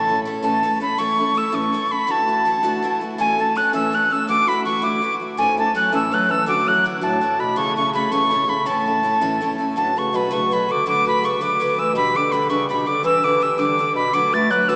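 Bathed in a wet church reverb with a small-speaker sound, this cheerful, lively Celtic jig in 6/8 puts a reedy, airy metal whistle up front on the melody with vibrato, tongued chiff and rolled-off highs, over a bright, full-bodied picked steel-string guitar with audible finger squeak, while a mellow, smooth-topped bass clarinet carries a second line, dropping out at 0.8 seconds and returning at 5.4 seconds before the tune moves into a new section at 9.8 seconds.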